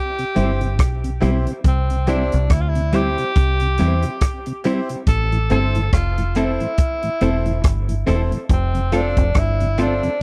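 A dry, close 1970s-style studio sound gives this sunny roots reggae excerpt its intimate feel, with a natural small-room drum kit of punchy kick, hi-hat and rim click sitting up front beside a deep, foam-muted fingered bass. A clear tenor saxophone carries the melody with scooped notes and dub echo, while a slightly broken-up, picked electric guitar with its own dub echo and brilliant grand piano stabs with long sustain fill out the arrangement, and a mellow tonewheel organ with key click and slow rotary speaker sits in the background. The swung groove moves from C to Am at 5.1 seconds and F at 8.5 seconds.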